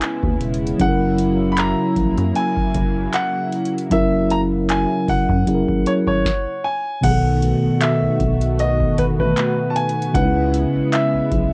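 A clear, intimate baby grand piano carries the melody up front, its natural tone ringing with long sustain and a touch of audible action noise. This is a late-night, longing slice of contemporary R&B at 77 BPM in 4/4, with a gentle swing on the sixteenths, cut from a longer piece. A mellow tine electric piano supplies clean accompaniment beneath it, while a smooth, detuned sawtooth pad holds sustained chords with a soft attack, long release and chorus. A booming analog drum machine sets a deep kick beneath a crisp snare, handclaps and metallic hats placed in a short room, along with a crash cymbal, and a rubbery, bouncy square bass enters at 0.2 seconds with a dark, resonant filter pluck. The harmony moves from C#m7 to F#7, and a stop from 6.3 to 7.0 seconds opens into a new section on B7 before returning to C#m7. Light reverb covers this home recording, and every part except the bass carries the tint of cassette tape.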